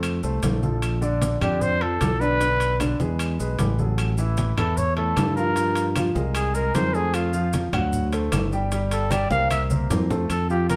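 Sunny and danceable, this Afro-Cuban jazz excerpt in F major moves at 152 BPM with a bright fingered electric bass up front, a warm concert grand piano with audible action noise, low-tuned congas, ringing saturated timbales, woody claves and grainy maracas beneath a mellow trumpet solo that enters at 1.4 seconds with light vibrato and scooped notes, all set in a wet studio room heard from further back, before a drum fill at 9.5 seconds.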